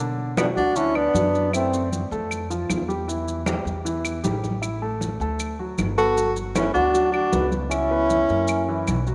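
A veiled, bucket-muted trombone with vibrato and scooped notes leads this sultry, sophisticated Afro-Cuban jazz excerpt in B minor at 155 BPM, sharing two phrases (0.4 to 1.9 s and again from 6.0 s) with a whispered, breathy tenor saxophone second line, over a warm baby grand piano, dark, thumpy gut-string pizzicato upright bass, ringing, distant congas, dry woody claves and grainy maracas, all bathed in moderate plate reverb.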